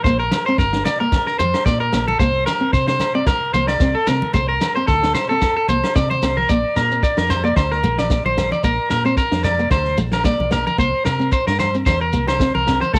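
Highlife guitar band at 112 BPM in Bb major, sunny and danceable with a light 16th-note swing, cut from a longer piece recorded at home on cassette with moderate booth ambience. Up front, a twangy, slightly broken-up electric guitar picks arpeggios coloured by cassette tape and tape echo. Beneath it sit a foam-muted fingered electric bass, a vintage drum kit with a punchy kick and medium-tuned snare, and a fingerpicked classical nylon-string guitar, while a grainy, saturated shekere and low-tuned, damped congas stay in the background and ringing agogo bells sound very quiet and distant.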